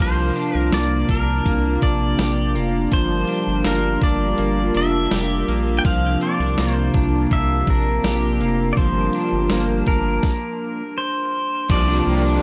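Dark, lightly reverberant production frames this floating, ethereal dream pop excerpt, where a clean, compressed pedal steel guitar carries the melody through delay and volume swells over a smooth, detuned sawtooth pad, a twangy, slightly broken-up electric guitar picking chorused, delayed arpeggios, a deep, round square-and-sine bass up front, and a very quiet, mellow vibraphone, while a thumpy, sampler-style 8-bit drum machine plays through a stop from 10.2 to 11.7 seconds, after which a raw, overdriven, double-tracked garage guitar with tremolo enters at 11.7 seconds.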